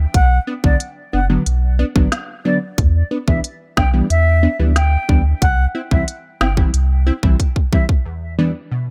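Bouncy and hypnotic, this dancehall excerpt in E minor at 91 BPM sets a deep, round sub bass and a tight-kicked, woody-snared electronic drum kit up front under crisp, detuned wavetable chord stabs pumping to the sidechain, while a pure wooden flute with vibrato floats through tape echo in a digital ambience, moving from Bm through Em7 and C before a drum fill from 7.4 to 8.1 seconds.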